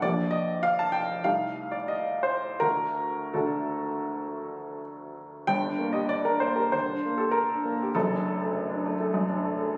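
A warm, worn baby grand piano carries this brief romantic character piece alone, sitting present and up front from 0.0 to 9.8 seconds. The mood is brooding and stormy, set in G minor in 4/4, with a rubato feel that lets the tempo drift between 80 and 102 BPM. The harmony moves through Gm/Bb, Am7b5/C and D in the opening section before a second section begins at 5.5 seconds on Gm and turns to D/F# at 8.0 seconds. The piano spans from F#1 up to A5, reaching into deep low notes. Captured on a phone in the room, the sound carries a light, club-like reverb, and the passage is cut from a longer piece.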